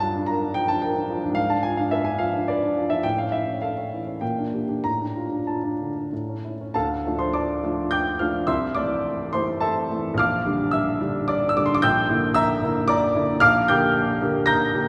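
A wet church reverb with a 3.5 s decay surrounds a clear, intimate grand piano that sits up front, its action noise audible in the natural sound of a church or concert hall. This passage from a romantic character piece for solo piano is in D minor and 3/4, moving at 92-115 BPM with a rubato feel. Its passionate, brooding harmony passes from Gm7 through G#dim7 to A, arrives on Dm at 6.7 seconds, then drifts through Am/C and Em7b5/Bb to close on Gm/Bb, across a range from Bb1 to Bb6.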